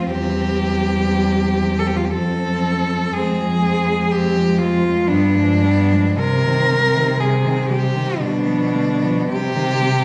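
In a slow 3/4 at 59 BPM, the beats fall unevenly and the pulse stretches with rubato, giving this lyrical classical piece for cello ensemble an elegiac, melancholic cast. It opens in C major and turns to C minor from 3.1 s, the harmony passing through an F minor chord and a G7b9 before settling back on C minor. Up front, a single cello carries the melody between D4 and Bb4 with light vibrato, a soft attack and an airy sul tasto bow, sounding intimate and close. Behind it, a second cello plays a gentle inner line in the same manner, while a darker, woody cello with vibrato bows the accompaniment, and a fourth cello, warm and soft-edged, anchors the bass from E2 to C3. Each part is played by one bowed cello, and a wet recital-hall reverb of 1.4 s sets the group in a church or concert-hall space with a mellow, rolled-off top end, in this passage cut from a longer piece.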